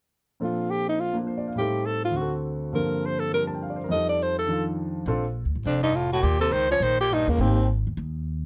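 Close, detailed microphones and a touch of light reverb give this brief slice of a longer jazz piece an intimate, up-front sound. At a brisk 206 BPM in 4/4 with a swung eighth-note feel in Bb major, the mood is swinging and sophisticated. A breathy alto saxophone carries the melody from 0.4 seconds, with a subtone, light vibrato, scooped notes and a smooth top, while a warm concert grand piano comps beside it, natural and deep in the bass, with its action noise audible. At 5.1 seconds a woody, dark pizzicato upright bass with steel strings comes forward, and at 5.7 seconds a clear baritone saxophone adds a second line with a soft attack, vibrato and scooped notes of its own. The harmony moves from Bbmaj7 through Am7b5, D7, Gm11 and F7, returns to Bbmaj7, then shifts to Eb5 and Abmaj7 near the close.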